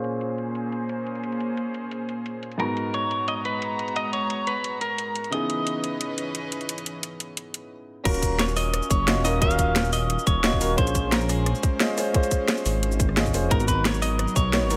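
Liquid drum and bass at 176 BPM in Eb minor, rolling and soulful, this excerpt opens with a boxy baby grand piano through delay and a close, reedy chamber string section with light vibrato and gut-string tone, riding an overdriven, up-front drum kit of cracking snare, bright hats, rim click, shaker and crash while a filter sweep moves over the opening bars. A clean, picked and compressed electric guitar carries the melody from 2.6 s, bathed in spring reverb and digital delay. At 8.1 s the drop brings in a dark, rumbling detuned saw bass with saturated, beating tone and a tight electronic kick, all over minor-ninth chords and a light digital ambience.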